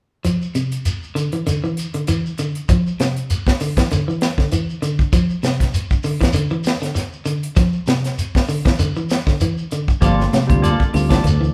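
Driving and intense, this afrobeat excerpt, cut from a longer piece, rides a lightly swung sixteenth-note groove over a single rootless G7 chord. From 0.2 seconds, a clean, up-front electric guitar picks low arpeggios over a dry, tight funk drum kit with a high-tuned snare, while a grainy, mellow shekere adds texture. At 10.0 seconds the groove fills out: a round, punchy fingered electric bass enters, along with a bright, barky tine electric piano, lightly overdriven through a combo amp with phaser. A hollow-body semi-hollow guitar joins at the same moment with picked stabs treated with spring reverb, and woody claves sit in the background. Very quiet, high-tuned congas played with soft hands join at 10.2 seconds, and the whole band plays live together in one large studio with moderate reverb.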